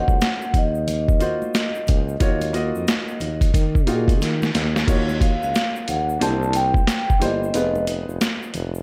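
A ringing vibraphone with a slow motor vibrato carries the melody over woody, intimate upright piano chords, with audible action noise, and a close-miked tuba bass with its own vibrato in this nocturnal, cool jazz-hop excerpt in Eb dorian at 90 BPM, swung on the 16ths. A gritty, pitched-down boom bap kit sits up front, with a thumpy kick, a high-tuned snare and the sound of a large room, while dry egg shaker and congas stay in the background. A drum fill at 4.2 seconds leads into a second section where the harmony moves from Ebm9 through C7 to Fm7b5, and the vibraphone drops out at 7.8 seconds, just before the end.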